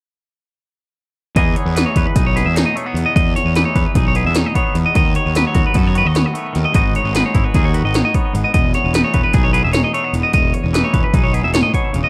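Math rock and midwest emo in E major, wistful yet bright, moving at 301 BPM in eighths through a straight 9/8, with a twangy, compressed electric guitar shimmering under harmonic tremolo, a clean, up-front electric guitar spinning picked arpeggios through tape echo, a growly fuzz bass driven with overdrive, and punchy 80s electronic pad drums with gated snare and metallic hats, all entering at 1.4 s over Emaj7, B7/D#, G#m7 and back to Emaj7 in a dark, dry production cut from a longer piece.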